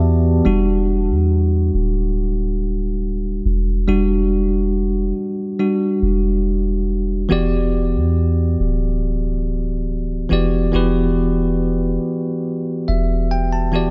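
R&B with a longing, moody air, this short cut from a longer piece opens on an Em7 chord. A bell-like tine electric piano sits up front, its bright, clean tone coming through built-in speakers, and it carries a solo line through the first half before returning with a fill from 12.5 seconds to the close. Beneath it, a soft 808-style bass holds the low end throughout, round and sine-like with a fast attack that decays into a dark, deep hum. For just the opening 0.8 seconds, a glassy synth bell glimmers in the background, a crystalline, warbling vintage FM tone colored by chorus, phaser and digital delay, with a long release. Light reverb gives the recording a gentle sense of space.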